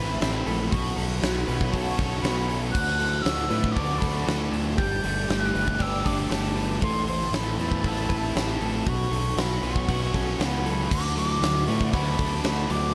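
A distant, pure-toned flute carries the melody in this hazy, dreamy shoegaze and dream pop excerpt in D major at 118 BPM in a straight 4/4. Around it, a faint sawtooth pad holds lush, detuned unison chords with a slow attack, chorus and phaser. A clean, direct-recorded electric guitar picks compressed arpeggios with subtle chorus and slapback echo, while the flute carries its own slapback. Deeper in the mix, an overdriven semi-hollow guitar plays a riff through reverse reverb, and a thick, dark fuzz guitar also plays a riff with distortion and lush chorus. Up front, a growling, punchy fingered bass with overdrive sits beside the huge arena drum kit, which enters at 0.2 seconds with a fat snare, punchy kick and bright cymbals in a pumping hall sound. The chords cycle through Amadd9, Bsus2, D and Gsus2 in a small, lightly reverberant room, with a faint mains hum beneath.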